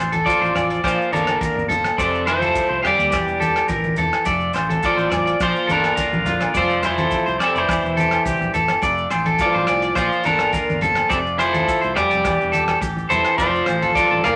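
Sunny and joyful, this short highlife guitar band excerpt moves at 105 BPM in a straight 4/4 in F major, circling F6 and Bb chords as two slightly broken-up electric guitars sit up front, one picking arpeggios and the other, entering at 0.3 seconds, carrying a twangy melody. Behind them a bright, clean, compressed rhythm guitar plays accompaniment over a growly fingered bass and a cloth-damped, gritty drum kit with a tight kick and rim clicks, while maracas, low-tuned congas struck with hard hands and ringing agogo bells fill in the background. A distant trombone with vibrato adds a roomy second line, and a wet studio reverb surrounds the ensemble.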